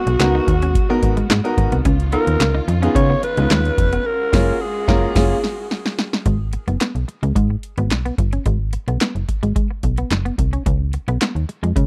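Danceable and funky, this early-eighties boogie funk excerpt at 109 BPM in G# dorian sets a breathy, raspy alto saxophone melody with tape echo over soft, bowed strings in the background, a clean, compressed semi-hollow guitar riff with analog chorus, snappy slap-like FM bass, a boxy grand piano, and a dry, up-front analog drum machine with deep kick, punchy snare, metallic hi-hats, crash and handclaps, all in a small, close 1970s-style studio room; a band accent and drum fill lead at 6.3 seconds into a sparser stretch where guitar, bass and drums carry on alone.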